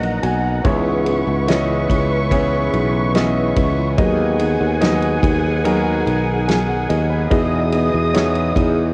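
This pop ballad excerpt moves at an unhurried 72 BPM in a straight 4/4, carrying an emotional, hopeful mood through a chord sequence of Bmaj7, C#m7, G#m7/D# and Emaj7. A concert grand piano provides the accompaniment with deep bass, long sustain and audible action noise that gives it an intimate, present quality. A studio string section holds sustained bowed chords with vibrato, a soft attack and a smooth top, played sul tasto for a close, gentle ensemble sound. Underneath, a fingerpicked nylon-string guitar adds dark, full-bodied arpeggios very quietly in the background. A fretless electric bass sits up front with a growly, direct tone, while a natural country drum kit of kick, snare and ride brings a punchy kick and fat snare from a small room, its sound colored by cassette tape. The whole piece has the feel of a home recording on cassette, lightly touched with reverb.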